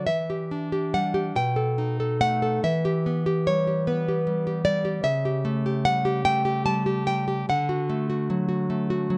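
Romantic solo classical guitar music, tender and sunny, unfolds in a rubato 6/8 at about 49 BPM in dotted quarters, tuned to A4 = 437 Hz, as a warm, fingerpicked nylon-string guitar sits up front in close, detailed sound with light reverb, moving through Em7, B7, Em, A7/C# and D across this 9.2-second excerpt from a longer piece.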